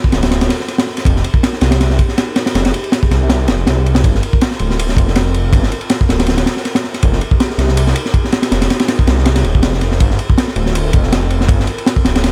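Raw and frenetic, this short drum and bass cut with a jungle edge runs at 161 BPM in 4/4, its sixteenths carrying a light swing. Up front, a crunchy breakbeat kit with a punchy kick, a high-tuned snare and a dark ride cymbal sounds saturated and gritty, its rolled-off top giving the acoustic kit a warm, small-room character. Entering at 0.1 seconds, a detuned saw bass growls in the low register, thick and beating with a menacing, fast-attack weight that sits just as close as the drums. Far behind them, an airy, breathy pad holds sustained chords, soft and slow to bloom, with chorus, a moving notch, a noise layer and a vintage 12-bit sampler grit. The harmony rocks between Gm11 and Fm11 throughout, and a small room reverb ties the parts together until the excerpt ends at 12.3 seconds.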